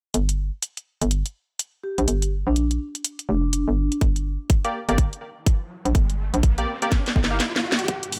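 A dry, close-sounding mix opens this swaggering, aggressive bass house excerpt in G minor, moving at 124 BPM in 4/4 with a 61% swing on the sixteenths. A hollow, bouncy FM bass sits up front, punchy and knocking with tube saturation and sidechain pumping, while a garage drum kit adds a cracking snare and warm hats, re-recorded in a small room. Between 1.8 and 4.0 seconds a vibraphone played with soft mallets rings out a metallic melody with motor vibrato and digital delay. At 4.0 seconds a tight, layered electronic kick drum arrives, and soon a band-passed sawtooth chord stab, nasal, detuned and bright, pumps with chorus and delay. An electronic riser climbs in from 5.7 seconds, joined by a drum fill at 6.9 seconds, and a deep, moody analog pad with a sub octave surfaces just before the cut.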